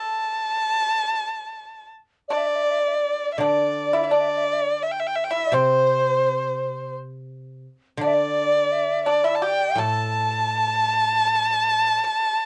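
Set in a light reverb, this tender, graceful excerpt of Chinese traditional chamber music in the A yu mode moves at a rubato 84 BPM, with a rich, focused erhu singing the melody up front with vibrato and portamento over a dry, percussive fingerpicked pipa from the start, a hollow, mellow bamboo dizi with a buzzing membrane joining in the background at 2.3 seconds, and a ringing, silvery guzheng entering at 3.4 seconds to accompany until 11.9 seconds.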